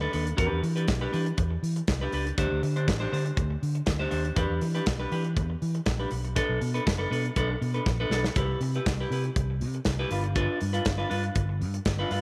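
A dark, round fingered electric bass sits up front in this glamorous, driving disco excerpt, an amped line moving through the low register in E minor at 120 BPM in a straight 4/4. Alongside it, a clean, picked semi-hollow electric guitar supplies the accompaniment with a hollow-body tone and spring reverb. An acoustic studio drum kit recorded in a small room keeps time on hi-hat, a tight kick and a medium-tuned snare, all placed close in the mix. The harmony moves through Em7, D7sus4 and Bm7 before a drum fill at 7.9 seconds leads into a new section at 8.4 seconds. There, the chords shift to Cmaj7 and G7 until the cut ends at 12.2 seconds, with light reverb over the whole recording.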